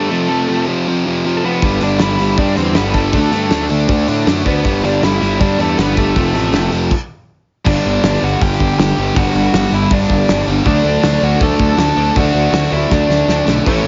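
Energetic and rowdy, this punk rock excerpt charges along at 159 BPM in G major, with a dark, nasal lead guitar through a parked wah carrying the melody over an overdriven electric guitar riff and a tight, bright distorted guitar, while a growly fuzz-picked bass and a loose, small-room indie drum kit with a punchy kick and medium-tuned snare join at 1.6 seconds. After a brief stop from 6.9 to 7.7 seconds, a very quiet, double-tracked fuzz guitar adds to the riff, and a drum fill arrives near the end at 12.9 seconds. The sound is dry apart from light reverb and has a dull top end.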